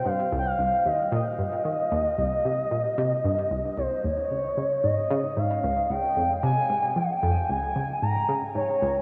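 Washed in a huge, eight-second reverb and the warble of worn cassette tape, this ambient fragment feels expansive and cosmic. A smooth, dark synth lead sings a sustained, vibrato-tinged melody from 0.0 s, with chorus and tape echo, while a round, detuned analog pluck with a noisy edge and a filter sweep enters at 0.1 s to play a low riff up front. The harmony moves from C minor to D-flat at 4.3 s.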